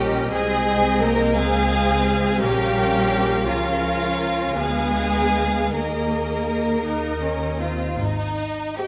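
A lush, up-front violin section carries the second line through this slow, lyrical and tender romantic movement for string orchestra in Ab major, moving in a rubato 6/8 at about 51-59 BPM, while a darker, woody violin section sings the melody above it. Focused violas with a smooth top fill in the accompaniment, and distant cellos and soft-attacked double basses, both warm and expressive, anchor the bass, with every section bowed with vibrato. A wet scoring-stage reverb surrounds the strings as the harmony moves from Ab/C through Dbmaj7, Bbm and Ddim7 toward Ebsus4 and Eb5, settling on Ab5 at 8.0 seconds in this fragment of a longer piece.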